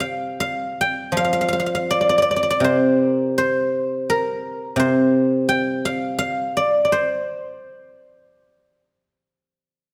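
Chinese traditional music for solo plucked strings: a guzheng alone, flowing and elegant, in a free rubato feel that hovers around 70-86 BPM in 4/4 and the C shang mode. The acoustic guzheng sits up front, its fingerpicked tone silvery and ringing as it moves between C3 and G5 until it falls silent at 9.2 seconds. A moderate scoring-stage reverb with a 1.9-second decay surrounds this short passage cut from a longer piece.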